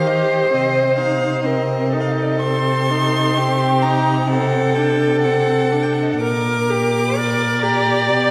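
In a rubato 4/4 pulse of 59-66 BPM, this yearning, solemn slow romantic movement for string quartet in G minor, cut from a longer piece, sets a close, soft-attacked first violin singing an expressive melody from D5 to D6 with portamento above a focused second violin line, a clear viola accompaniment and a rich, up-front cello bass, each bowed by one player with vibrato and moving through Eb, Cm, D5/C and Gm/Bb inside a wet scoring-stage reverb of 1.8 s.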